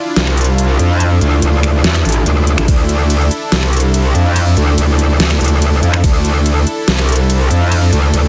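A lush, detuned supersaw pad holds a D minor add-nine chord with sidechain pumping before a metallic, distorted wobble bass enters up front at 0.2 seconds over a half-time dubstep kit of finger snaps, crisp hats, ride cymbal and deep snare, while an overdriven, knocking electronic kick lands at 2.7 and 6.0 seconds, giving this heavy, aggressive 143 BPM wobble dubstep cut a dense, tightly limited punch.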